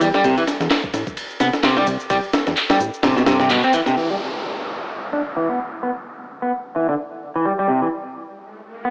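Lo-fi cassette and AM-radio grit with a spring-reverb haze frames this raw, funky breakbeat excerpt in E minor at 129 BPM with a swung sixteenth feel, where a twangy, slightly broken-up electric guitar riff runs throughout through tape echo and a low-pass filter, a fat sawtooth analog bass with tube saturation, a thumpy sampler-style kit with a high-tuned snare and ride, and layered electronic shaker and handclaps drive the opening before dropping out after a band accent at 3.5 seconds, leaving the guitar over a downlifter and a riser that builds from 8.1 seconds.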